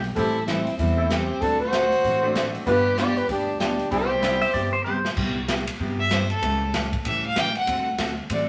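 A mellow flugelhorn carries the melody with vibrato and scooped notes, sounding distant and roomy in this playful western swing piece in C major at 192 BPM. A clear, bowed fiddle runs alongside, while a twangy lap steel adds slide phrases and volume swells. Bright acoustic guitar and a worn, slightly detuned upright piano with audible action noise sit in the background, over woody pizzicato upright bass and an airy big-band drum kit with a punchy kick. The flugelhorn drops out at 4.8 seconds, a drum fill at 4.9 seconds leads to a fiddle solo from 5.2 seconds, and the whole piece sits in wet studio reverb.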